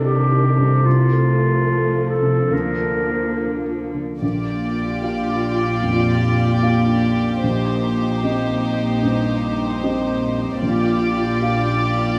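Cinematic and tender with a hopeful glow, this rubato passage at 75 BPM in Bb major opens with a felt-muted upright piano, dark woody viola section and soft cello section beneath a roomy solo clarinet line that ends at 3.8 s, before a floating, sul tasto violin section carries the melody from 4.2 s with a second violin line and the double bass section, all bathed in a moderate scoring stage reverb over chords moving from Cmadd9 to Bb6 and Gm7/Bb.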